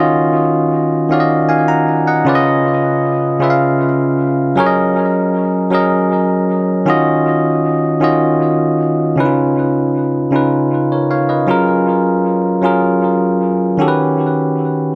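R&B with a sultry, late-night mood at a slow 52 BPM in 6/8, featuring a lone bell-like tine electric piano that sounds bright, clean and up front through analog delay, drifting over Ebm9, Db9 and Gb69 chords before shifting at 9.2 seconds into a passage that closes on Eb7alt, all set in an echo-heavy mix with moderate spring reverb and digital ambience.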